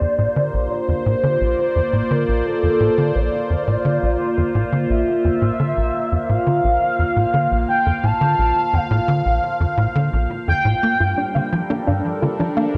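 A straight 4/4 pulse at 86 BPM drives this mysterious, hypnotic stretch of ambient, sequencer-driven space music, anchored by a tight, punchy sawtooth-and-square sequencer bass riff that sits up front with ensemble chorus and analog delay over Bbmaj7, moving to Gm7 at 10.8 seconds. Above it, a swirling, detuned analog pad holds sustained chords through phaser and chorus, while a smooth, expressive synth lead with vibrato sings a melody between A4 and A5, bathed in lush chorus and analog delay until 11.8 seconds. A soft, round pluck slips in with brief arpeggios at 11.0 seconds, and the whole echo-heavy cassette-tape mix sits in a wet plate reverb, cut from a longer piece.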